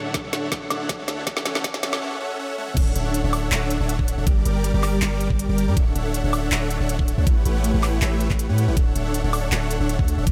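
Future bass at 160 BPM in a half-time 4/4 feel, this playful, lush passage in D major is cut from a longer piece. A huge, detuned supersaw riff, thick and up front with sidechain pumping and digital delay, carries the chords from Dmaj7 through A6, Gm and A13. Beneath it, a deep, boomy 808-style bass with a fast attack and decaying sine tone also pumps to the sidechain. A knocking electronic kick and a trap kit with a woody snare, crisp hats, handclaps, toms, woodblock and crash enter at 0.1 seconds, opening with a drum fill during the build-up. A brief break from 2.0 seconds gives way to the drop at 2.8 seconds, which runs to the end. The mix sits in light reverb with a high-pass filter.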